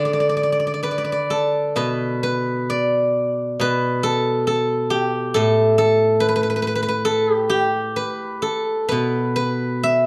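Pastoral and serene, this brief rubato fragment of Chinese traditional music for solo plucked strings, moving at roughly 63-70 BPM in 2/4, features a ringing, silvery steel-string zither played with fingerpicks and placed up front, spanning A2 to E5 across its short opening passage and the longer one that follows from 1.8 seconds, all set in a wet recital hall reverb within a dark, warm production.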